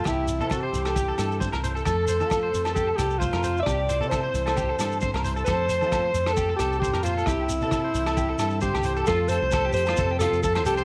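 A lightly swung 4/4 groove at 133 BPM drives this sunny, joyful highlife guitar band excerpt in F major, where a breathy alto saxophone with light vibrato carries the melody up front over twangy, slightly broken-up electric guitar arpeggios with chorus and slapback echo, a dark, clean electric guitar in the background, a direct fingered bass, a muffled vintage drum kit with punchy kick, hi-hat and rim click, ringing agogo bells and a grainy shekere, as the harmony moves between C, F and Fadd9 in light reverb.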